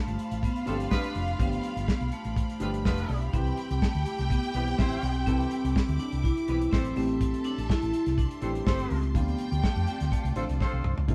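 A lightly reverberant sound, like a band playing live in one room, frames this driving, sultry disco excerpt, with a ringing, metallic vibraphone carrying the melody over slow motor vibrato while a dark, woody string section plays a second line and clear, focused strings hold sustained chords in the background. A mellow, worn baby grand piano with audible action noise accompanies, a round hollow-body electric bass and a dry, smooth soul drum kit sit up front, and a horn section with octave doubling adds tight stabs from 0.7 s. The chords move from G9 through Cmaj7 and Am7 to Dm7, and the drums close on a fill at 10.6 s.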